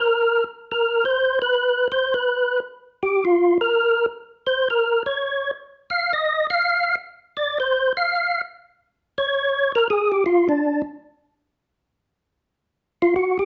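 A swung 4/4 at 166 BPM drives this soulful jazz fragment, cut from a longer piece, where a percussive tonewheel organ plays a solo between D4 and F5. The organ sits up front with a fat, lightly overdriven tone, third-harmonic percussion and key click, colored by chorus vibrato and a slow rotary speaker. It plays until 10.8 seconds, then returns for a brief phrase at 13.0 seconds in a moderate studio reverb with a rolled-off top end.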